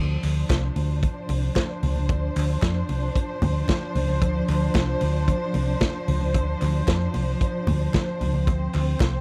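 Celebratory and glamorous, this short disco excerpt at 113 BPM rides a single Dm7 chord, with lush bowed strings holding sustained chords over a dark, round hollow-body electric bass, a vintage drum kit of punchy kick, snare and hi-hat, and low-tuned congas and hollow group handclaps tucked in the background of a dry, close 1970s-style studio sound.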